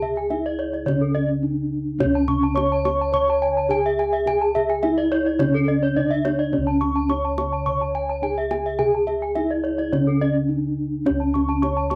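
Shimmering and brilliant, this short Balinese gamelan passage in straight 4/4 sets a mellow, soft bronze metallophone melody up front, struck with padded mallets and pulsing with the beating shimmer of paired tuning. Two more metallophones weave arpeggios around it: one played with a wooden mallet, close-miked and full with a touch of plate reverb, and another, struck with a horn mallet, bright and ringing. Round, beating bossed gongs carry the bass, while a tight kendang sits in the background and adds a drum fill between 1.3 and 2.0 seconds, all within a wet studio ambience with a home-cassette tape character.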